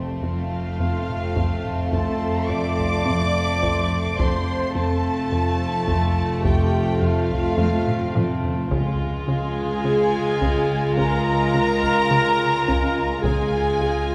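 A dark, woody violin section carries the melody high in the register, bowed sul tasto with vibrato and a distant, lush sheen, in this mysterious, uneasy suspense film cue at a slow 53 BPM in 4/4. Violas play soft-attack, sul tasto accompaniment beneath it, while a punchy, wave-folded analog synth bass with a fast filter pluck plays a funky riff. A second violin section adds an intimate second line, a higher violin layer floats pure and smooth as texture, and a French horn section holds tight, classical-style sustained chords in the background. Cellos and very quiet double basses anchor the bass sul tasto, joined by a nasal, evolving analog drone with chorus and a slow attack. A taiko ensemble with heavy sticks enters at 1.1 seconds, plays a fill around 7.6 seconds, and the harmony moves from F to Db at 8.7 seconds. The whole cut from a longer piece sits in the lingering reverb of a church or concert hall.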